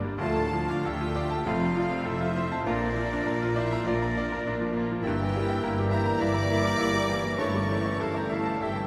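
A bright, up-front baby grand piano carries the melody from the start over lush violas and a dark double bass section and cello section, moving through Dm, F and Bb toward Edim/G and A7/G with a brooding, passionate rubato feel in this classical excerpt. At 0.2 seconds a rich, vibrato-laden violin section joins the piano's melody, while a softer sul tasto violin section, a clear oboe, an airy, distant flute and a very quiet clarinet weave second lines, and a faint bassoon adds accompaniment. Mellow French horns and a tight trombone section sustain distant chords, all bathed in a huge, echoing reverb.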